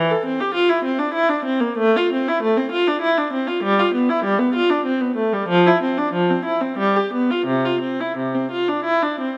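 Moderate recital-hall reverb surrounds a single bowed viola placed up front, its tone rich and smooth, with vibrato and an even touch across a range from C3 to A4. This baroque-style suite movement for unaccompanied viola is in C major and 3/4, tuned to A4 = 445 Hz. It moves in a flowing, dance-like rubato between 82 and 101 BPM over a brief 9.4-second passage cut from a longer piece.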